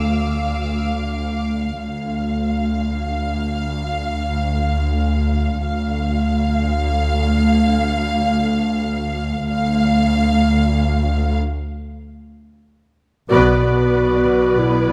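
Cinematic suspense film score in free time and D minor, mysterious and eerie, where a focused, vibrato-laden violin section carries the melody over woody, distant cellos and smooth, up-front double basses, with a soft-attack high violin texture heard only through 1.4 seconds, a break at 11.4 seconds, and a band accent at 13.3 seconds bringing in a mellow solo clarinet line, expressive violas and a ringing fingerpicked harp in the background, all set in a moderate concert hall reverb.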